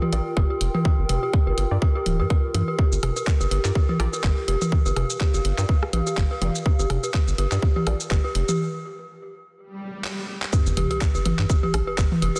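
Swung 4/4 minimal techno with a clinical, quirky mood rides on a tight, up-front electronic kick, a garage kit of bright hats, handclaps and shaker, and a dry, booming analog drum machine of rim clicks and toms, beneath a rubbery, bouncy square bass and an eerie, inharmonic FM synth bell riff with chorus, pumping and dub echo, while a nostalgic lo-fi tape-like pad and a muted, phased dub chord stab with 12-bit grit sit in the background until a break at 8.6 seconds brings a swell and sub drop leading into the drop at 10.5 seconds.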